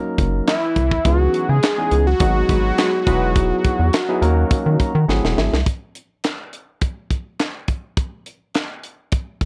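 A barky, clean tine electric piano opens this funky, danceable slice of early-eighties boogie funk, its bright tone heard through a combo amp. Almost at once a rubbery, hollow square bass with a resonant filter pluck and a tight, acoustic funk kit of kick, high-tuned snare, hi-hat and handclaps join up front, followed by a fat, detuned analog lead carrying the melody with vibrato and a slapback echo. Around 2.5 seconds a brassy, mellow sawtooth synth brass line with chorus adds a brief second voice in the background. The harmony moves through lush minor-seventh and ninth chords before a tense G#7b9b13, with an electric piano fill and then a drum fill marking the turn. From 5.7 seconds the drums carry on alone into a new section, all captured in a dry, close studio sound with little reverb.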